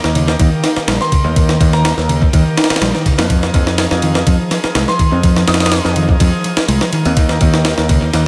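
Breakbeat in F minor at 124 BPM with a swaggering, raw feel, built on an up-front, pitched-up sampler-style drum kit with a thumpy kick, high-tuned snare, ride cymbal and analog delay, alongside a growly, bright picked electric bass and a dark, round overdriven bass riff with 12-bit grit entering at 0.2 s, while a shouting tonewheel organ on slow rotary with sidechain pumping holds sustained chords moving from Eb to Fm7 in the background and a soft, pure FM synth bell with chorus and an AM radio tone plays brief melodic phrases at 1.0 and 4.9 s, within an echo-heavy mix with light reverb.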